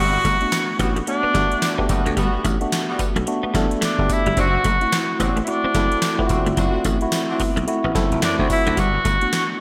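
A bright, vintage tenor saxophone melody rides up front from the start of this bouncy, flirty new jack swing excerpt in G major at 109 BPM, joined at once by a clean, compressed electric guitar riff with ensemble chorus in the background, warm jazz-style horn stabs with slapback and tape echo, and a growly slap bass, before a booming, overdriven analog drum machine with deep kick, crisp snare, metallic hats and tambourine arrives at 0.2 seconds and a worn, slightly out-of-tune tine electric piano with slapback echo fills in at 0.4 seconds over Gmaj7 and D7 chords, all set in a lush hall reverb with a big arena sound.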